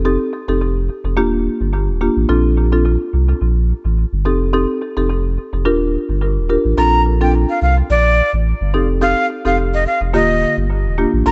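A woody, dark marimba with analog delay and a round, deep sub bass open this romantic, breezy afrobeats excerpt, swinging gently over a cycle of F7, Ebmaj7 and Bbmaj9 chords. At 6.8 seconds a breathy, bright jazz flute takes the melody up front, its vibrato and crisp chiff trailed by analog delay. Light reverb and an echo-heavy mix with the highs rolled off give the piece a soft, hazy sheen, and it is cut from a longer piece.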